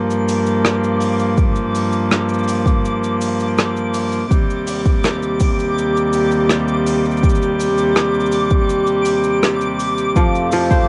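Autumnal and delicate, this folktronica excerpt at 82 BPM sets an up-front, nasal, gut-string quartet bowing sustained chords from Gm7 to Eb6 under a twinkling granular shimmer with built-in reverb, soft brushes on cabasa, hi-hat and rim click with a cassette tint, a deep electronic kick entering at 1.4 seconds, and a bright, crisp fingerpicked kora whose ringing arpeggios arrive on F at 10.2 seconds, all in a booth with moderate ambience on a home cassette recording.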